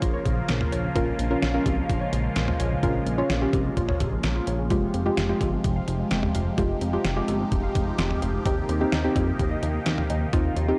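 Cool and driving, this synth-pop passage is cut from a longer piece and moves in a straight four-beat pulse over a chord progression of Bbm, Fmadd9 and Eb6. Up front, a detuned 8-bit digital drum machine with a thumpy kick, medium-tuned snare, hi-hat, cowbell and toms is overdriven and sounds re-recorded in a large room. Beneath it, a chorused synth bass with a retro, glossy pulse-wave tone and a mellow filter pluck anchors the low end. A soft, round, dark pluck with a wave-folded edge carries the accompaniment, while a swirling, bright analog pad built from detuned sawtooth waves holds sustained chords through phaser, chorus and shimmer reverb. Farther back, a warbling, lo-fi pluck traces arpeggios with tape echo, and the whole recording has a dry, gritty hardware character with transformer saturation and cassette tape colour.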